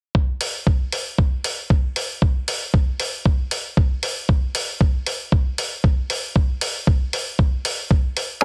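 Dry, heavily compressed radio-style sound frames this sleek, groovy nu-disco excerpt in straight 4/4, where a gritty, thumpy sampled kick and an up-front sampled hi-hat with small-room ambience carry the beat until a bright, twangy, scooped clean electric guitar riff with analog chorus arrives at 8.4 s around Db4, joined by a saturated tube shaker in the background.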